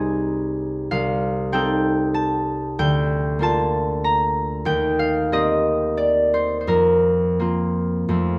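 Dreamy and graceful, this short classical passage for solo concert harp drifts in a flexible, rubato 3/4, cut from a longer piece. The harp sits up front with a ringing, fingerpicked tone spanning C2 to C6, wrapped in light reverb. Its harmony moves from Ab/C through F7/C and Bb/D to Cm7/Eb, settling on Fsus4 at 6.7 seconds before the passage ends at 8.4 seconds.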